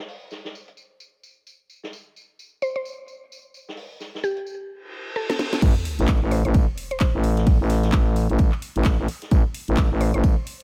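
This bass house excerpt opens with an acoustic, natural-sounding jazz kit playing quietly in a small room, its hi-hat, medium-tuned snare and tambourine filtered and gently pumping, at 130 BPM in A minor with a swung sixteenth-note feel. At 2.6 seconds a woody, round mallet-like synth pluck enters with the melody, its detuned, percussive notes thickened by chorus and trailed by tape echo. A reverse cymbal swells and a sub drop sounds as the garage kit plays a drum fill, and at 5.6 seconds the drop hits with an impact. A punchy, tape-warm electronic kick sits up front alongside a growling, thick FM bass on a low A, driven with overdrive and sidechain pumping, while the garage kit adds a cracking snare, handclaps, hi-hat, ride and crash. The mood is gritty and swaggering, with the overall mix kept fairly dry and close.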